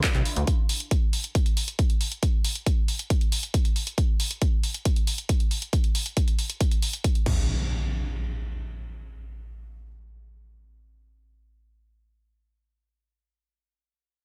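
A straight 4/4 pulse at 137 BPM drives this emotional uplifting trance fragment, where a layered, up-front electronic kick drum and an overdriven analog drum machine carrying crash cymbal, handclaps and hi-hat, re-recorded in a large room, play together until 7.3 seconds, when a forward electronic impact takes over and lasts until 11.9 seconds within a digital ambience.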